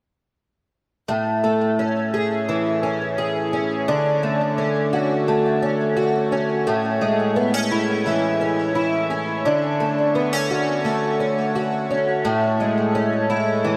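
A fingerpicked twelve-string acoustic guitar, boxy and octave-doubled with analog chorus and delay, plays up-front arpeggios from 1.1 to 13.8 s, moving between Amaj7 and Dmaj7 in A major at 86 BPM in a straight 4/4, while a wet shimmer reverb with a 5.4-second tail gives this short dream pop piece, cut from a longer one, a floating, ethereal mood.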